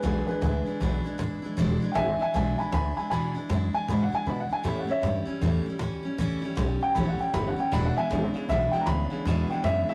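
Rowdy and upbeat, this swung rockabilly snippet features a dark, mellow upright piano soloing up front with intimate, vintage character and audible action noise, over thumpy gut-string pizzicato bass, a bright, full-bodied picked dreadnought acoustic guitar and a woody, softly played cajon with faint snares sitting in the background. After a brief break at 4.3 s over the E7 to A7 changes, a clean, twangy electric guitar riff enters at 7.7 s as the harmony returns to E7. The rough rehearsal-room sound carries a stone room reverb, saturation and lossy compression artefacts.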